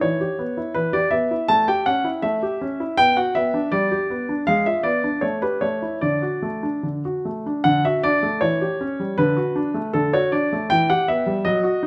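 A clear, natural baby grand piano sits up front in a moderate recital hall reverb, playing a playful, graceful classical-period sonatina in D major at a rubato 80 BPM in 2/4, tuned to A4 = 436 Hz, its short-sustained notes spanning D3 to A5 as the harmony moves from Em through A7, Bm, G and G#dim7 to a D arrival at 6.0 seconds before a new section opens at 7.6 seconds and this cut from a longer piece closes on Em at 10.7 seconds.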